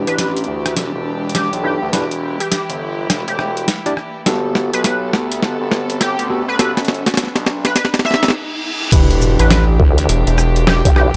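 Playful, funky glitch hop at 103 BPM in E minor with a 16th-note swing, this excerpt builds over Em7 and Gmaj9 as gritty, tape-warm boom bap drums, a nasal driven synth bass, overdriven tine electric piano stabs under a filter sweep, a tearing sync lead with chorus and tape echo, distant bowed chamber strings and quiet risers gather toward a reverse cymbal and a stop at 8.3 seconds, before the drop at 8.9 seconds brings a thumpy kick and, from 9.8 seconds, a resonant vowel-sweep wobble bass.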